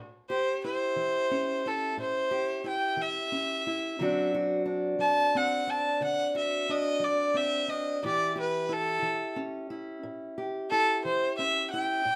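A nasal, earthy fiddle with light vibrato carries the melody up front in this gritty, rollicking acoustic country blues excerpt at 60 BPM in 12/8, entering at 0.3 seconds over a dark, boxy fingerpicked parlour guitar with old strings that moves through A7, D7 and back to A7 in a lightly reverberant room.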